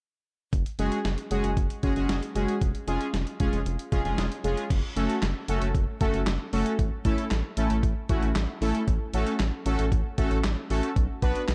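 Cool and nocturnal, this synth-pop excerpt at 115 BPM settles into F# minor at 4.7 seconds, pairing a rubbery, hollow square bass and a gritty, compressed sampler-style drum kit with a thumpy kick, snare, hi-hat, handclaps and crash alongside bold, fat analog synth brass with detuned sawtooth tone and chorus, all bathed in a lush hall reverb and dark production.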